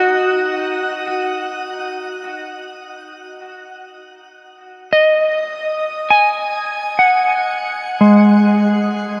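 A bright, picked G#5 from a clean electric guitar opens this short, reflective ambient excerpt, and the guitar plays solo up front from 0.0 to 9.2 seconds across a range from G#3 to G#5. Vibrato colours its tone, and a diffuse ambient delay trails each note. A long, wet shimmer reverb with a 7.4-second decay gives the piece its spacious atmosphere.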